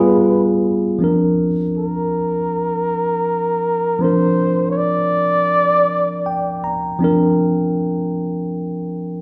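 Bathed in a lush recital-hall reverb, this sultry, soulful R&B fragment at 80 BPM features a breathy, mellow flugelhorn singing an intimate jazz-style solo line with gentle vibrato until 6.6 seconds, over a worn, slightly out-of-tune tine electric piano that comps up front and slips in a fill at 5.9 seconds.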